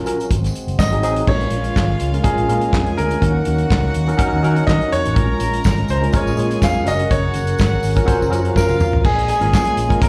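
Sultry and danceable, this disco passage sounds like a live gig heard through the venue's PA, with club reverb and small room ambience around it. A damped 70s drum kit sits up front with a tight kick, medium-tuned snare, hi-hat, handclaps, toms and crash cymbal, and it plays a fill from 8.6 to 9.0 seconds. A vintage foam-muted fingered electric bass adds a dark, round low end, while a worn, barky tine electric piano, slightly out of tune and lightly overdriven with slapback echo, carries the accompaniment. A brilliant grand piano plays the melody from 0.8 seconds, and a clear, floating studio string section adds a second line from 1.3 seconds, both with slapback echo. In the background, a mellow, distant French horn section holds sustained chords, and a jingly tambourine sits low in the mix as the harmony moves among minor seventh chords and a major seventh.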